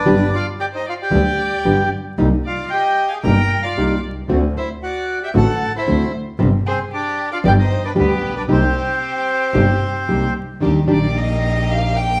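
A reedy bandoneon carries a melancholic, passionate rubato tango melody over a distant, rich bowed violin with vibrato and portamento, a biting, earthy bowed double bass and a dark, fingerpicked nylon-string guitar, all played live in one room with wet reverb and vinyl crackle, until the bandoneon stops at 10.3 seconds and the violin takes a solo from 10.6 seconds against lush, bright studio string stabs in this fragment of a longer piece.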